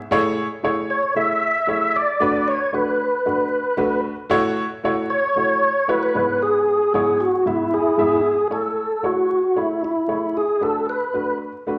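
A straight 4/4 groove at 114 BPM drives this joyful, danceable soul passage in A major, cut from a longer piece, with chords moving from Amaj7 through Bm7, F#m7 and C#m7/G# before a new section arrives at 8.5 seconds. A woody, slightly detuned upright piano with short sustain supplies the accompaniment from the start, and at 0.9 seconds a fat, lightly overdriven tonewheel organ takes the melody, louder than the piano, with chorus vibrato, audible key click and a slow rotary speaker. The band plays together in one room, bathed in a generous large-studio reverb with a layer of vinyl crackle.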